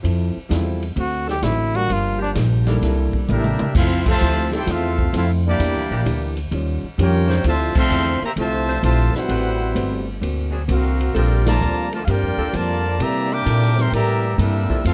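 Big band swing in F major at 130 BPM, this joyful, swinging passage is cut from a longer piece and has a dry sound. An upright bass sits up front, woody and growly with steel strings, over a distant, roomy drum kit with dark cymbals, a medium-tuned snare and a boomy kick. A dark, clean hollow-body electric guitar comps in the background, and an intimate concert grand piano with audible action noise adds brief accompaniment near the start. At 1.0 seconds a solo trumpet plays a short phrase with scooped notes and light vibrato, while a mellow saxophone section holds smooth-topped sustained chords in the background. From 3.3 seconds a tight, close-miked trumpet section carries a clear melody over a vintage-tinged trombone section on a second line, with a drum fill and band accents marking the phrases as the chords move through colours such as Em7b5, Eb9 and D7alt.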